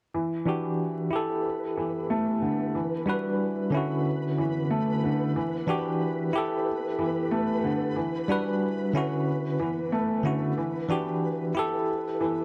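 Trip hop at 92 BPM in E dorian with a swung sixteenth feel, cinematic and brooding, where a soft, felt-muted upright piano plays low arpeggios through a low-pass filter and delay from 0.1 seconds, a barky, bell-like tine electric piano with tremolo and tape echo adds up-front accompaniment from 0.5 seconds, and a grainy, flickering texture holds a sustained B4 from 0.9 seconds, all over a cycling Em9, G69, Gmaj7, Dmaj9 progression in a dark production with an echo chamber, small room reverb and vinyl crackle, cut from a longer piece.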